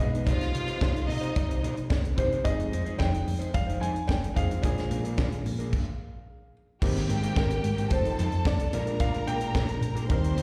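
Tight funk drums with a high-tuned snare and a dark, round hollow-body bass sit up front in this joyful, danceable disco clip in straight 4/4, where an intimate grand piano with audible action noise carries the melody over a barky, fast-tremolo electric piano and a slightly broken-up electric guitar, a metallic cowbell rings in the background until 5.3 s, and a lush, bowed string section briefly appears at the start and returns at 6.8 s after a stop at 5.7 s, all of it heard as a live gig through the venue's PA with recital-hall reverb.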